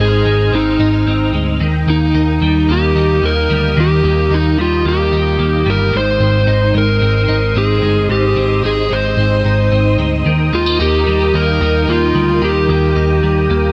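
A straight 4/4 pulse carries this ethereal, dreamy dream pop passage, cut from a longer piece, where an overdriven slide guitar sings the melody up front, bathed in shimmer reverb and delay, over clean, compressed electric guitar arpeggios with chorus, shimmer and delay, mellow organ-like ensemble string chords with a soft attack, and a dark, round, punchy foam-muted picked bass, the whole sitting in a moderate plate reverb.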